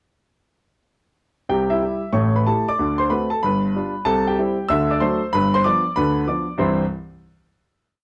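Jazz stride piano in C major at 189 BPM, exuberant and swinging, played by a solo grand piano with a clear, up-front sound that carries the tune in octaves over a stride bass, spanning from G1 to E6. The short piece moves through C, A7, D7 and G7 before landing on a final C chord at 6.6 seconds, set in a moderate club reverb with a dark production.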